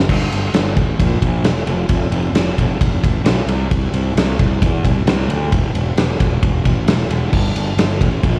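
Classic rock with a confident, swaggering feel, this short cut from a longer piece pairs a growly, overdriven fuzz bass, fingered low between E1 and E2, with a huge arena drum kit of crash, ride, snare and punchy kick. The drums sound dark and smooth with a rolled-off top, while both parts sit up front. The whole thing comes across like a live gig heard through the venue's PA, with light club reverb and a layer of vinyl crackle.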